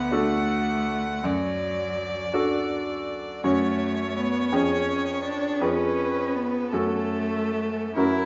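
Opening together, a bright concert grand piano with deep bass lays out the accompaniment while a bowed cello with vibrato carries a focused second line and a solo violin sings the lyrical melody with a smooth top, in this warm, rubato slow romantic movement for piano quartet in 6/8 at 55 BPM in dotted quarters, drifting from D major into F# minor at 3.4 s within a resonant recital hall.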